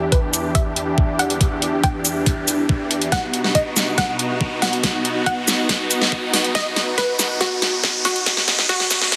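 Heavy wobble dubstep at 140 BPM in a half-time 4/4 feel, this menacing, chaotic build-up excerpt moves from Em7 to B at 3.1 seconds while a drum fill runs from there to the end. Huge, bright supersaw chords pump under sidechain, phaser and a sweeping low-pass filter. A punchy detuned unison pluck carries the melody through dub echo and its own filter sweep, while a deep, moody ambient pad with chorus and built-in reverb sits in the background beside an electronic riser. Up front, a knocking, tape-warm electronic kick joins a dubstep kit of huge snare, metallic hi-hats and shaker, all set in a lush hall reverb and a dense, heavily limited master tuned to A4 = 439 Hz.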